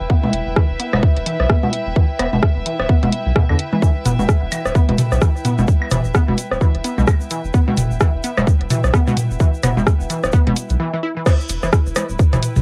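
A swung 4/4 pulse at 129 BPM drives this clinical, sparse minimal techno excerpt in E minor, built on an up-front, tight electronic kick, a booming analog drum machine with claves, rim clicks and toms, and a garage kit with bright hats and crash, joined at 3.8 seconds by a grainy tube shaker. A deep, saturated sub bass and a floating string section, bowed sul tasto, both pump against the sidechain, while a squelchy, nasal blip pluck riff carries lush chorus, analog delay and a filter sweep that runs on through a short break at 10.8 seconds. The drop lands at 11.3 seconds on an E5 chord, and the pluck, strings and whole mix carry a light-reverb, home-cassette grain.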